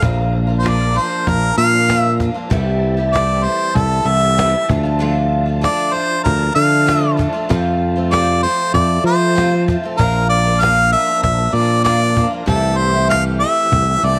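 A jangly, hopeful stretch of folk rock and heartland rock at 96 BPM in a straight 4/4 opens with everything at once: a clear, punchy harmonica carries the melody up front with vibrato and scooped, pop-style notes, over a bright, shimmering, octave-doubled twelve-string acoustic guitar picking the accompaniment. Underneath, a direct fingered electric bass sits prominently, a snappy cajon struck with hard hands keeps time, and a very quiet, lightly overdriven tonewheel organ holds full sustained chords through a slow rotary speaker with audible key click. Light reverb frames this cut from a longer piece as it cycles through Bb, C6, Dm and F.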